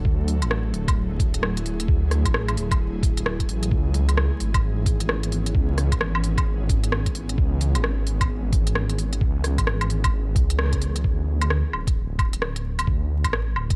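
A vinyl crackle and light digital ambience frame this melancholic, wistful future garage excerpt, which moves at 131 BPM in 4/4 with a swung sixteenth-note feel in C# phrygian. An ethereal, airy pad built from detuned saw and triangle layers with a breathy noise edge holds sustained chords from the start, its slow attack and long release softened by ensemble chorus and reverb and ducking under sidechain pumping, before it stops at 11.0 seconds. Beneath it, a dark, detuned saw bass sits up front, deep and rumbling with a beating, saturated edge, pumping under sidechain compression as the harmony moves from D to C#m7. A muffled, thumpy, pitched-down kick with a tape-warm, compressed character anchors the groove, while an up-front electronic kit adds crisp hats, rim clicks and woodblock. After a full-band accent at 10.6 seconds, the chords drop away and the bass and drums carry the closing seconds on their own.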